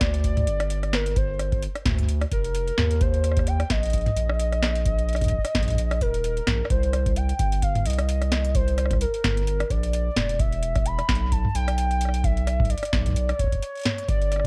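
A lightly swung 4/4 groove at 130 BPM drives this IDM fragment, cut from a longer piece, with a deep, tape-tinged electronic kick under a booming analog drum machine that adds crisp snare, metallic hi-hats, rim clicks and toms. A round, dark analog bass with a fast attack and sustained triangle-and-sine tone sits up front, holding down the low end across all 14.5 seconds. Above it, a warbling, nostalgic lead of detuned triangle and sawtooth waves carries the melody with a soft attack, vibrato, portamento, chorus and digital delay, giving it a mellow, slightly unsteady glow. The harmony moves through G5, Eb5, C5 and E5 chords, and the whole track is tuned to A4 = 442 Hz. A digital ambience with the worn character of old cassette tape and its warbly pitch drift surrounds the track, leaving a cerebral, eerie mood.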